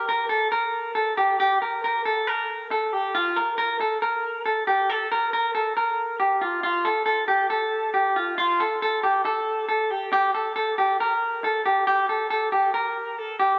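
Restless and bittersweet, this indie pop excerpt moves at 138 BPM in a straight 4/4. A lone electric guitar, played through a small old amp, carries the whole passage from 0.0 to 13.6 seconds, staying within a narrow span from F4 to Bb4. Its fingered tone is warm, twangy and slightly broken-up, with a lo-fi character that sits up front in the mix and rings with spring reverb. A moderate large studio reverb surrounds the sound, while the top end is rolled off, giving the recording a dusky, muffled sheen. The tuning sits a touch low, at A4 = 438 Hz, adding to the faintly worn feel.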